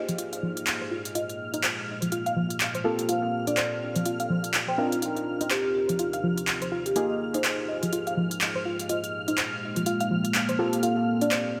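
Smooth and hypnotic, this deep house fragment at 124 BPM in F dorian swings its 16ths over up-front handclaps and smooth hi-hats, as a woody soft-mallet marimba melody with dub echo, chorused round plucks with 12-bit grit, mellow sawtooth key stabs, a silky high string pad and a dark, detuned ambient pad under a filter sweep move through Fm11, Gm11 and Cm11 in an echo-heavy plate-reverb mix.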